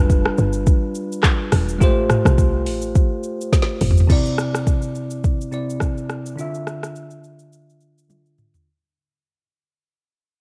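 Afrobeats at 105 BPM in C major, this short cut from a longer piece feels sunny and joyful, riding a lightly swung sixteenth-note groove in 4/4. A bell-like tine electric piano carries the chords, moving from G7 and Fadd9/A to Cadd9 and Dmadd9, its clean, bright tone placed up front yet softened by a low-pass filter and cassette tape coloring. A woody log drum bass, punchy and mellow with a fast attack and a noisy FM edge, plays only until 4.0 seconds. The electronic afro-pop drum kit sits loudest in the mix, with a deep kick, snare, metallic hi-hats, handclaps, rim clicks, shaker, crash and toms, and drum fills close out each half. From 4.1 seconds a filter sweep moves across the electric piano as the music fades out, all captured dry on a home cassette recording.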